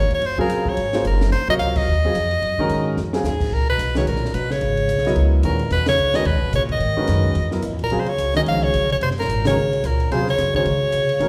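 Searching and cool, this modal jazz excerpt swings briskly at 218 BPM, moving between D#m11 and C#m11 in a reverberant recital hall. A bright, close-miked soprano saxophone carries the melody up front with light vibrato, over woody pizzicato upright bass, a natural-toned grand piano and a compact cocktail kit with a dark, smooth sound, punchy kick and high-tuned snare. The band hits accents together, and after a drum fill at 3.0 seconds a mellow bass clarinet joins at 3.3 seconds with a vibrato-laden second line.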